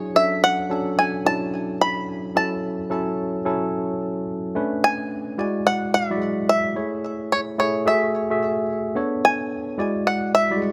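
Bouncy and punchy, this short R&B cut at 109 BPM swings its sixteenths in B dorian as an up-front, twangy, percussive bluegrass banjo played with fingerpicks carries the melody through a digital delay, while a worn, slightly out-of-tune tine electric piano, heard through built-in speakers, accompanies it in a lightly reverberant room over jazzy chords such as Dmaj7, Bm9, E9 and Amaj7, with the second section arriving at 4.6 seconds.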